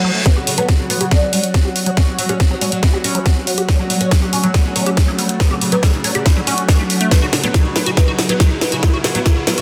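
Intense and driving, this short psychedelic trance excerpt at 140 BPM in F# phrygian sets a woody, plectrum-plucked oud melody with phaser and dub echo over a squelchy, resonant acid bass riff under a filter sweep, an evolving, detuned wavetable pad and a blurred granular cloud pad in the background, all pumping against an overdriven, up-front kick that enters at 0.3 seconds with a cracking techno snare and hi-hat. A very quiet reverse cymbal and riser add to the texture as a build-up and drum fill unfold through a dense, heavily limited mix.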